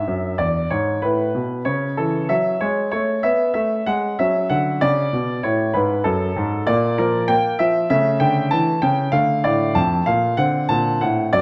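A clear, up-front concert grand piano plays alone in this elegant, playful classical-period sonatina at 96 BPM in a rubato 4/4, its open tone and deep bass spanning E2 to A5 and captured by close, detailed microphones in a moderate recital hall reverb, with the harmony settling into D minor from 6.7 s in a short passage cut from a longer piece.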